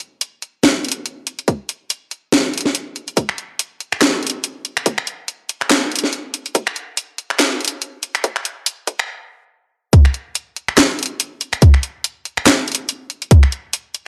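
The recording sits in a moderate digital room reverb with a thin, filtered edge and faint lossy-compression artefacts, giving this short cut from a longer dubstep track a heavy, dark cast. At 142 BPM in 4/4 with a half-time feel and a light swing on the sixteenths, a garage drum kit of finger snaps, handclaps, bright hats and a cracking snare sits up front from the very start. A tight, layered electronic kick with a high-pass filter joins at 1.5 seconds and carries more weight in the mix than the kit. The opening section is a build-up that breaks into a brief stop at 9.1 seconds before the drop lands at 9.9 seconds. Both parts have a polished, produced character.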